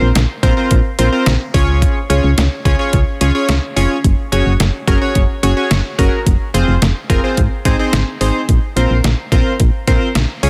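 A punchy FM bass sits up front, its round, dark notes striking with a fast attack and then decaying low in the register, anchoring this driving, nocturnal synth-pop piece at 108 BPM in Bb minor. Analog keys carry the accompaniment in the middle range, blending pulse, sawtooth and triangle waves with ring modulation, a filter sweep and chorus for a bright yet glowing tone that also strikes quickly and fades. A detuned 8-bit drum machine enters at 0.2 seconds with a thumpy kick, a fat snare and hi-hat, its sampler-style sound carrying a tape-like warmth. The harmony moves through Bbsus2, Db, Gbsus2, Fm and Ab before returning to Bbsus2 at 8.5 seconds as a new section begins. Light reverb surrounds a dense, heavily limited modern master, and the recording is cut from a longer piece.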